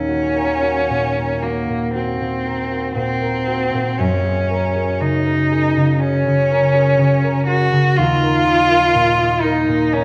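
Classical impressionist duo, mysterious and hazy, in which a single bowed cello sings a smooth, even melody with vibrato in a flexible rubato over a ringing, thumb-plucked concert harp accompaniment, both up front in a lush scoring-stage reverb throughout this short excerpt from a longer piece.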